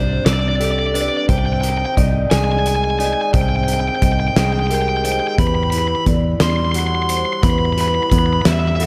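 Light reverb and small room ambience surround this hopeful, euphoric post-rock passage in 6/8, cut from a longer piece. A biting, overdriven guitar carries the up-front melody over arpeggios from a lo-fi, slightly broken-up electric guitar through a small old amp with spring reverb and from a dark, ringing vibraphone with slow motor vibrato; both guitars and the vibraphone trail slapback and tape echo. A round, foam-muted fingered bass sits prominently beneath, a loose indie kit with a fat snare and punchy kick joins at 0.3 s, and the harmony moves from Csus2 through Abmaj7/C to Emadd9.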